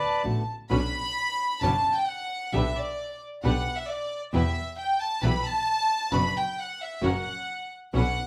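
Elegant and nostalgic, this rubato tango fragment in B minor at 132 BPM features a close, reedy bowed violin section with light vibrato and gut-string tone that takes the lead from 0.7 seconds, over a fingerpicked classical nylon-string guitar in the background, a clear, smooth bowed double bass up front, and dark, nasal chamber strings adding stabs, with the band playing live in one room under moderate studio reverb.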